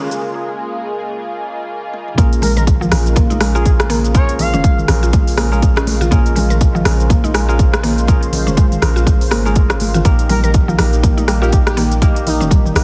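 A heavily compressed, radio-like sheen with light digital reverb frames this earthy, spiritual afro house excerpt at 122 BPM in Bb dorian, where a smooth sawtooth pad, a woody mallet-like FM pluck with a filter sweep and dub echo, and worn, slightly out-of-tune tine electric piano stabs with 12-bit sampler grit open over smooth-hatted afro-pop drums with rim clicks, shaker and toms, until a drum fill at 1.9 s leads to the drop at 2.2 s, when a punchy, up-front layered kick, a deep boomy 808-style bass and very quiet, close, dry congas enter beneath a gliding, vibrato-laden portamento lead that sings briefly from 2.4 s and returns at 10.3 s as the chords shift from Bbm7 to Eb.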